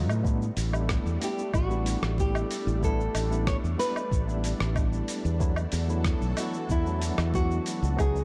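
A straight, unhurried groove in 4/4 comes from a knocking electronic kick with a tape-softened edge, set against a gritty, compressed sampler-style kit of hi-hat, rim click, shaker and woodblock. This short sunset chillout fragment, cut from a longer piece, feels sunny and blissful. A round, punchy fingered electric bass sits up front with a dark, direct tone. Alongside it, a clean, bright tine electric piano plays accompaniment as if through its built-in speakers, while a lush, thick pad of detuned sawtooth and square waves swells in slowly with chorus, phaser and shimmer reverb. At 1.2 seconds a fingerpicked nylon-string guitar enters with the melody, its classical tone carrying audible finger squeak and trailing into delay and shimmer reverb. The harmony rests on A9sus4 before moving to E9sus4 at 5.4 seconds, all within a dark, warm production bathed in light digital ambience.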